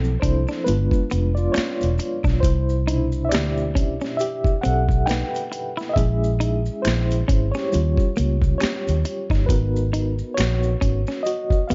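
Late-night and smooth, this neo-soul R&B cut from a longer piece sways on a swung sixteenth-note feel. A mellow, reedy electric piano with tremolo, heard through its built-in speakers, sits up front and takes a solo throughout, moving through Dm9, a rootless G7b9, Cmaj7, Bbm7b5, Eb7 and Abm9. Beneath it, a vintage foam-muted fingered electric bass gives a round, punchy, amped low end. A boom bap sampler-style drum kit joins at 0.2 s with a thumpy kick, a high-tuned snare and hi-hat, sounding compressed, gritty and pitched down as if re-recorded in a large room. The clean electric guitar enters at the same moment with a picked, compressed second line, while maracas and finger snaps add a live-room layer from the background. Digital ambience wraps the mix in a dark, warm production that tops out at 7.5 kHz.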